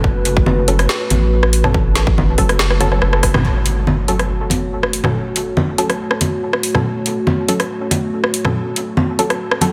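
A dense, heavily limited mix sits in a moderate echo-chamber reverb. It frames a dark, brooding deep dubstep cut in F# minor at 141 BPM with a half-time feel, where a moody, detuned analog pad holds sustained chords with chorus and a moving notch. A muted, filtered dub chord stab with chorus and dub echo runs a filter sweep through the opening. A saturated, up-front sub bass and a punchy, overdriven electronic kick drive the first part, while a garage kit with a woody snare and metallic hats plays alongside low-tuned, thick-skinned congas soaked in dub echo. After a drum fill at 2.8 s and a band accent at 3.3 s, the sub bass and kick drop away and an electronic impact hits at 3.4 s, leaving the pad, stab, kit and congas to carry on.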